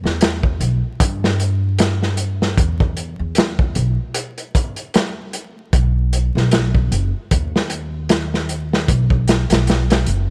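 This smoky, dark trip hop excerpt moves at 76 BPM in E minor with a 16th-note swing, tuned slightly low to A4 = 438 Hz, and the upright bass opens it alone at 0.0 s before the drums arrive at 0.1 s. The pizzicato upright bass is woody, with steel strings, sitting low in its register. The up-front breakbeat kit is crunchy, gritty and saturated, with a tight kick, a medium-tuned snare, hi-hat and a rolled-off top, all set in a dry, small-room sound alongside a layer of vinyl crackle.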